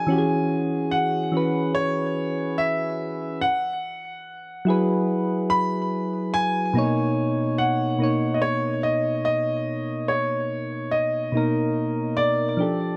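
A light reverb gives this short, smooth R&B clip a soft, dreamy sheen. It moves at an unhurried 72 BPM in straight 4/4, in B major, with tuning set slightly below standard at A4 = 439 Hz. A warm concert grand piano carries the melody up front in its upper register, its tone carrying a deep bass weight and trailed by a delay. Beneath it, soft electric-piano-like synth keys supply the accompaniment across the full 13 seconds, round and mellow with a fast attack, decaying notes and a chorus shimmer. The harmony drifts through E69, F#9sus4 at 3.4 seconds and Bmaj9 at 6.8 seconds, and the passage is cut from a longer piece.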